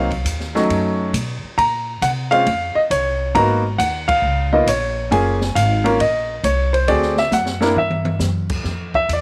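Lightly reverberant and natural, this sophisticated, warm jazz piano trio fragment swings at 136 BPM, with an up-front, short-sustained baby grand carrying the melody over a woody, thumpy pizzicato upright bass and an open acoustic drum kit of dark cymbals, a high-tuned snare and a boomy kick, all moving through lush extended chords, with a band accent at 4.0 s and a drum fill from 7.3 to 8.2 s.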